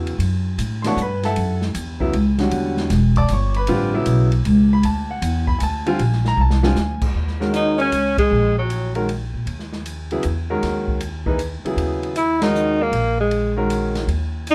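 Intense and spiritual, this modal jazz excerpt swings in 3/4 at 156 BPM, with a clear grand piano comping over a woody, thumpy pizzicato upright bass and an airy acoustic drum kit with dark cymbals and a boomy kick, until a drum fill at 6.4 seconds leads into an Eb phrygian passage where two tenor saxophones enter around 7.5 seconds, a clear, plate-reverbed lead with light vibrato and scooped notes over a mellow, soft-attacked second line, punctuated by a band accent at 8.1 seconds and returning at 12.2 seconds for another accent at 12.4, all set in a dark, moderate club ambience.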